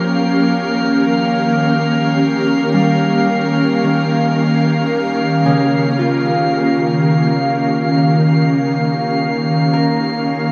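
Spacious and serene, this ambient excerpt moves slowly at 56 BPM in 3/4, set in a huge, wet reverb space with a long 8.2-second tail. An ethereal, airy pad sits up front, holding sustained chords from Bb minor to Eb7 with a warbling, vintage ensemble chorus and a shimmer reverb over its slow attack and long release. Above it, a drifting glass-harmonics texture holds a bright, glassy F5 with calm overtones, also bathed in chorus and shimmer. A fingerpicked Celtic harp enters at 2.7 seconds with ringing arpeggios through a delay, gradually fading in until the cut at 10.5 seconds.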